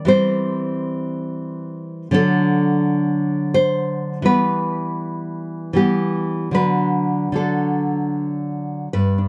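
Nostalgic and warm, this short excerpt comes from a romantic piece for solo classical guitar, cut from a longer work. Set in 3/4 with a rubato feel, it drifts between roughly 74 and 89 BPM, giving the phrases room to breathe. The nylon-string guitar plays alone from 0.0 to 9.3 seconds, fingerpicked and sitting up front, with a warm, acoustic tone that spans from G2 up to C5. The harmony moves through C/E, D and Em before returning to D at 6.6 seconds. Close, detailed microphones capture the intimacy of the playing, softened by a light touch of reverb.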